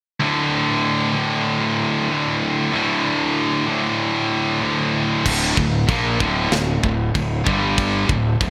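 At a straight 95 BPM in 4/4, this aggressive, relentless heavy metal excerpt opens with two bright, picked high-gain guitars, one scooped, riffing together over D5 until a growly fuzz bass and a tight drum kit with bright china and crash cymbals under gated reverb come in at 5.3 seconds, moving through Dm to G5 inside a bright 1980s-style digital production with a moderate plate reverb.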